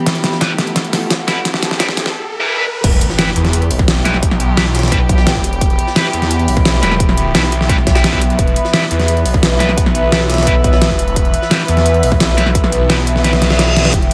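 Clear, floating bowed strings and a warbling, nostalgic lo-fi pad with chorus and reverb open this dark, tense technical drum and bass excerpt, over a filtered build-up where a drum fill and an electronic riser rise toward the drop at 2.8 seconds. There an impact lands and a swirling, thick detuned saw bass with phaser and overdrive takes the front, driven by a punchy overdriven kick, an up-front dubstep kit with a deep snare and metallic hats, and a very quiet, gritty jungle-sampler kit; the strings, pad and bass all share a sidechain pump. Bright, double-tracked distorted guitar stabs with delay sit in the background, and near the end the kick drops out for a second drum fill and a reverse cymbal.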